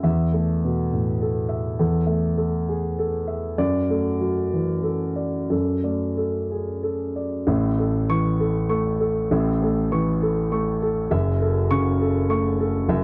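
Peaceful and tender, this short excerpt cut from a longer neoclassical minimalist piano piece moves in a flexible, rubato 3/4 at roughly 90-105 BPM in A major. A dark grand piano plays alone throughout the 13 seconds, its mellow tone sitting up front and spanning from deep F#1 in the bass to C#6 in the upper register. The harmony opens on an unresolved Esus4 before shifting to D/F#, then the second section from 7.5 seconds settles onto A and closes on F#m7. Light reverb gives the instrument a gentle sense of space, and the dusky, warm production keeps the mood intimate and unhurried.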